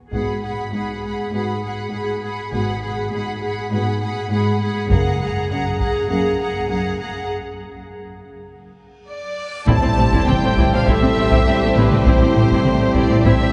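Heavy-stick taiko drums drive this epic, relentless orchestral film-score excerpt, where distant, lush violins carry the melody over a smooth second violin line, intense bowed violas, rich cellos and very quiet double basses, with dark French horns holding soft-edged chords in the background, until a break at 7.3 s leads through a huge reverse cymbal and sub drop into a 9.7 s impact where present trombones and a pipe organ on chiffy flute stops with tremulant join beneath a cathedral reverb.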